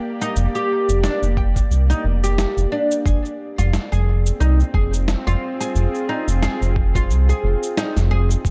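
A deep, round analog bass sits up front in this mystical organic downtempo piece at 89 BPM in F dorian, beneath woody, double-stringed oud arpeggios carrying tape echo and a tense, string-like drone with 12-bit sampler grit and sidechain pumping whose sustained chords move from Ebmaj7/F to Fm at 3.1 seconds, while a gritty, sampler-style electronic shaker and snare are joined by a thumpy electronic kick drum at 1.4 seconds, set in a dark, warm, dry production.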